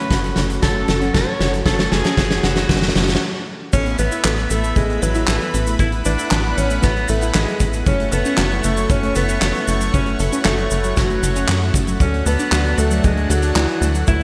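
A bright, forceful alto saxophone carries the melody in this dreamy, uplifting synthwave excerpt, its pop-style solo marked by vibrato, scooped notes and a smooth top, with a touch of delay. Moving in a straight 4/4 at 116 BPM in A major, the piece opens with a drum fill that runs to 3.2 seconds, followed by a brief stop before the main section arrives at 3.7 seconds over chords moving from F#m through Asus2 to D. Beneath the horn, a thick, airy unison pad holds sustained chords with chorus and sidechain pumping, while a gentle FM synth bell traces a pure second line in the background with chorus and delay. A full-bodied, detuned pluck plays very quiet arpeggios, and a glossy, retro polysynth adds mellow, very quiet stabs with pulse-width movement. A tight, driving sequencer bass sits up front with a sawtooth and square-wave bite and a touch of ring modulation, joined by a huge arena drum kit with a fat, gated-reverb snare, handclaps, hi-hat, cabasa and crash, and a punchy acoustic kick in the background. 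The whole mix shines with a bright 1980s-style digital sheen and a lush hall reverb.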